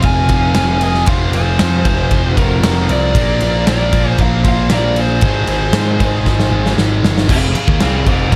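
A big, up-front acoustic rock drum kit drives this menacing, aggressive hard rock excerpt at 116 BPM in a straight 4/4, with a punchy kick, a medium-tuned snare, and crash and ride cymbals in a dark, smooth big-room sound. Beside it, a fuzz-laden picked electric bass sits just as far forward, bright and overdriven. Three picked, distorted guitars play the riff: a scooped high-gain one and a tight one in the background, and a very quiet double-tracked high-gain layer. Over them, a dark, overdriven lead guitar carries the melody, while a distorted octave-fuzz lead adds a second line until it stops at 6.7 seconds. The harmony moves from F minor to B-flat and A-flat, and a drum fill from 6.3 to 7.3 seconds leads into a lead guitar solo as the chords return to F minor, all set in light small-room reverb.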